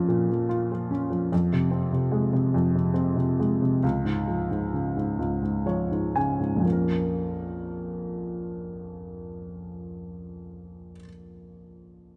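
Folk in 3/4, this short cut from a longer piece moves at a straight feel somewhere between 59 and 74 BPM in Bb minor, tuned slightly sharp to A4 = 441 Hz. The mood is reflective and heartbroken. A lone upright piano carries the accompaniment from 0.0 to 12.2 seconds, reaching from deep Bb1 up to Ab5, its tone woody, intimate and slightly detuned, with audible action noise and a natural, up-front presence. The harmony moves from Bb minor to F minor at 1.3 seconds, then to Db, and the tempo slows from 1.3 to 6.6 seconds before the music settles back on Bb minor as a new section begins at 6.6 seconds. A moderate plate reverb with a 2.7-second decay surrounds the piano, lending the close sound a gentle sense of space.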